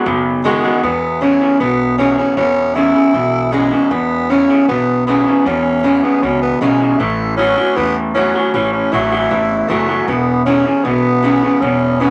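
A straight four-beat pulse carries this rollicking, upbeat rock cut, taken from a longer piece. An electric guitar played through a small old amp sits up front with a twangy, slightly broken-up riff, while a picked swing-style acoustic guitar adds boxy accompaniment with audible finger squeak. A pizzicato upright bass with gut strings supplies a woody, thumpy low end, entering at 0.1 seconds. The growling tenor saxophone comes in at 0.4 seconds and takes the solo melody, close-miked and up front with a raspy, gritty edge and vibrato. The harmony moves from B6 to E6, shifts to A6 at 7.0 seconds and returns to E6, all set in a wet studio ambience with vinyl crackle over the top.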